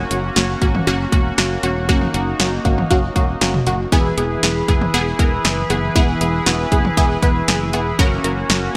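Synth-pop at 118 BPM in F# mixolydian, bright and upbeat, moving from F# to E and back to F# by 8.0 seconds, with a punchy house drum kit of cowbell, bright hats, kick, snare and toms up front; a detuned, wave-folded unison pluck with a filter sweep, moving notch and analog chorus; a shimmering, retro pulse-width pad holding sustained chords through chorus; and a growly fretless electric bass, all set in a lush hall reverb with bright 1980s-style digital production.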